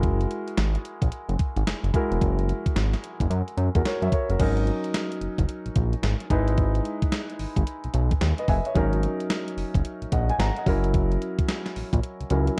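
A punchy, confident new jack swing groove opens at once at 110 BPM with a swung sixteenth feel, as a gated 80s digital drum machine with a thumpy kick, crash, hi-hat and gated-reverb snare sits up front beside a fat, detuned analog bass with a nasal, saturated sawtooth bite and a filter pluck with a fast attack. A polished, present grand piano supplies the accompaniment, moving from an F#9 opening into a D#m7 and Emaj7/G# passage at 4.4 seconds before resolving toward F#7. The dry, close studio sound keeps every part tight, and the kick drops out at 12.0 seconds as this cut from a longer piece closes.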